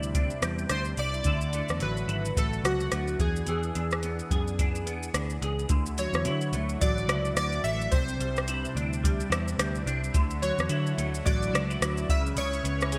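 From the very first beat, an overdriven, up-front vintage rhythm box with deep kick, metallic hats, rim click and shaker plays alongside a round, foam-muted picked bass, a clean hollow-body electric guitar with warbly chorus drift, glossy detuned synth keys carrying the melody, and an airy unison pad sitting in the background, forming a hazy, sunny indie bedroom-pop passage at 108 BPM with a swung 16th feel in D lydian, set in plate reverb and a bright 1980s-style digital production as the chords move from Cadd9 and Dadd9 to E7 before a second section that reaches C#m7 at 12.1 seconds.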